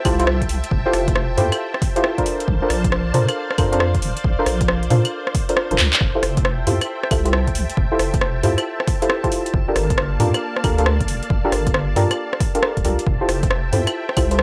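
A deep, detuned wobble bass sits up front from 0.1 s, its saturated, compressed tone dark and warm under a layer of chorus. This bouncy, soulful slice of two-step UK garage moves at 136 BPM in F major with a heavy 16th-note swing, cycling through Fmaj9, Bbmaj9 and Gm9. A mellow, nasal chord stab with a filter pluck and tape echo sits just behind the bass, while a silky vintage string machine holds slow-blooming chords far lower in the mix, pumping against the sidechain. The drums pair a punchy analog kick with an overdriven, layered garage kit of metallic hi-hats, claves, handclaps and rim clicks. The kick drops out at 5.6 s, with a drum fill at 5.8 s, and the excerpt carries a dry, gritty cassette-tape character.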